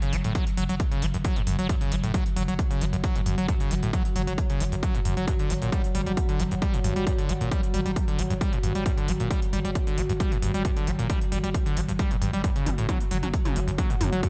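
A straight 4/4 pulse at 134 BPM drives this peak-time techno excerpt, anchored by a heavy, tape-tinged electronic kick that sits up front from 0.4 seconds, while a layered techno kit adds smooth hi-hats and toms, all pumping against the sidechain. Beneath it, a growling, buzzy 808-style bass with overdrive and a low-pass filter moves between F#1 and G1. The centrepiece is a screaming acid riff between F#2 and G3: squelchy, resonant and aggressive, its sawtooth tone is distorted and thickened with chorus and digital delay, and it carries a filter sweep while pumping with the sidechain. An analog drone on F#3 fills the background with a mellow, evolving pulse-width texture, slowly blooming and sustaining under chorus. The harmony sits on F#5, shifts to G5 at 5.3 seconds and returns to F#5 at 12.4 seconds, carrying the industrial, driving mood within a bright 1980s-style digital sound with light reverb.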